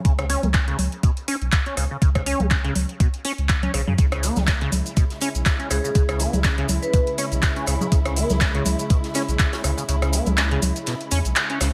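Hypnotic and driving, this acid house cut moves at 122 BPM with a light 16th-note swing. A squelchy, resonant acid riff with overdrive and dub echo rides over a thick, saturated sub bass, both pumping against a thumpy, tape-warm electronic kick and a booming analog drum machine of congas, handclaps, metallic hats and rim clicks. At 4.0 seconds a dark, lush bowed string section enters with a grainy cabasa and a very quiet soft-mallet kit; a ringing vibraphone with tape echo adds a brief melody at 5.7 seconds, and the kick drops out at 9.9 seconds before a closing band accent, all in a dry, up-front mix.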